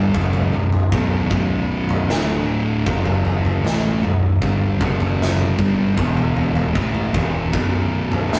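A thick, distorted fuzz guitar sits up front, warm and picked, while a second, darker fuzz guitar lurks in the background, also driving a riff through this 8.4-second excerpt of stoner and doom metal in B minor at 77 BPM. A round, overdriven fingered bass rumbles low beneath them, and a big acoustic rock kit with a punchy kick, medium-tuned snare and toms enters at 0.1 seconds, placed up front in a big room sound. The mood is heavy and hypnotic, with chords moving from B5 through D5, F#5, Bm, F#5 again, G5 and E5 before returning to B5, all captured as a rough rehearsal-room recording with light reverb.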